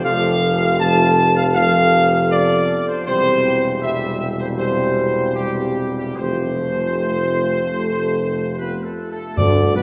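A straight 4/4 pulse at a stately 72-80 BPM carries this majestic, solemn brass chorale, a brief passage cut from a longer classical piece and tuned to A4 = 438 Hz. Up front, a clear trumpet section sings the melody between G4 and A5 with light vibrato, while a close-miked trombone section holds sustained chords beneath it. A dark French horn section, soft in attack and set back in the room, adds its own sustained harmony with a gentle vibrato, and a warm, distant tuba anchors the bass from E1 to D2. The harmony moves from F to C/E and back to F, and at 9.4 s a close, calf-headed timpani stroke on G2, played with medium mallets, enters just as the phrase closes. A long church reverb, with a 3.1-second decay, places the ensemble at a listening point further back in the hall and lends the chords a grand, spacious bloom.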